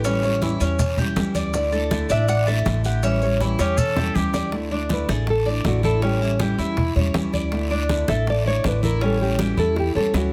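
The woody, thumpy upright bass sits up front in this danceable Cuban son and guajira excerpt at 160 BPM, its pizzicato steel strings anchoring a swaying move between A7 and Dsus2. A thumb-plucked nylon-string guitar carries the melody with a classical touch and audible finger squeak, taking a solo from 4.5 seconds onward. Beneath it, a dark, full-bodied fingerpicked steel-string guitar supplies accompaniment while the Cuban tres spins metallic arpeggios on its doubled strings. In the background, low-tuned congas with thick skins and soft hands pair with tight, high-tuned bongos and grainy maracas that drop out at 4.5 seconds, while a raspy guiro joins the percussion. A clear, punchy trumpet with scooped notes and a vintage character adds a brief second line from 3.6 seconds, all set in light reverb.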